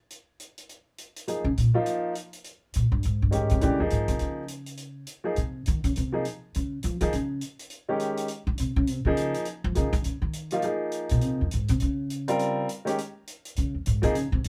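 A natural-sounding acoustic hi-hat opens this intense, spiritual modal jazz excerpt in Bb dorian at 205 BPM, swinging in 4/4 and sitting low in the mix. At 1.3 seconds a clear, open baby grand piano comes in to accompany, and from 1.4 seconds a woody, thumpy pizzicato upright bass with steel strings stands up front as the soloist, roaming between F2 and F3 over a single Bbm11 chord. The band plays live together in a small room with moderate reverb, giving the performance an immediate feel.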